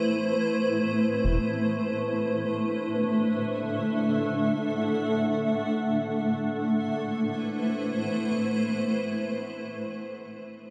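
Drenched in a huge, dreamy reverb with a seven-second tail, this eerie, melancholic IDM fragment in free time, cut from a longer piece, floats in A dorian. A cloudy, blurred granular pad of detuned unison sines holds sustained chords from Amadd9 to Dadd9/A, with a filter sweep running across it until 6.7 seconds, when it returns to Amadd9. A round, deep analog bass with tube saturation and a ring-modulated edge sounds only briefly on a low E, from 1.2 to 1.4 seconds.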